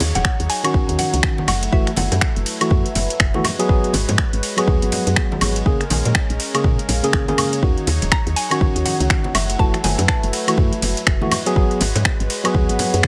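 A digital ambience surrounds this smooth, moody deep house excerpt at 122 BPM in Eb minor, swung on the sixteenths, as the chords move through Ebm7, Gbm7, Abm7 and Bbm7. Up front, a deep, tape-tinged electronic kick arrives at 0.2 s alongside a layered kit of finger snaps, metallic hi-hats, ride cymbal and woodblock in studio reverb, while ringing, close and dry congas struck with hard hands sit further back. A woody, round FM bass with a fast, decaying attack pumps with the sidechain beneath a worn, slightly out-of-tune tine electric piano that enters with mellow stabs at 0.6 s, heard through a combo amp with delay. Two background pads fill the harmony: a vintage analog pad of detuned sawtooth and wave-folded tones with chorus and sidechain pumping, and a warbly, nostalgic lo-fi pad with a slow attack, long release and built-in reverb. A percussive, mallet-like FM pluck with a noise layer carries the melody through chorus, phaser and tape echo, playing a short phrase at the opening and returning at 8.1 s.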